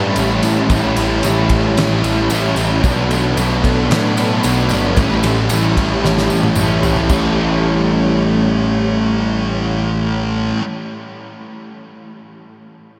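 A straight, steady 4/4 pulse carries this dreamy, wistful fragment of shoegaze-leaning dream pop rock, cut from a longer piece. Up front, a thick fuzz guitar grinds out a low riff through distortion and analog chorus. An overdriven semi-hollow guitar plays its own riff higher up, its hollow-body tone trailed by reverse reverb. A growling, overdriven electric bass anchors the bottom, while a vintage string machine set to cellos holds dark sawtooth chords in the background, slow to bloom and coloured by phaser and ensemble chorus. A loose indie drum kit with a fat snare, punchy kick and dusky cymbals sits back in a pumping room beside a jingly, close tambourine; a drum fill arrives at 6.0 seconds, and both drums and tambourine drop out by 7.3 seconds, leaving guitars, bass and strings to ring on. The harmony moves from A7 to Bm7 and back to A7, and a huge ambient reverb soaks the mix in a hazy wash.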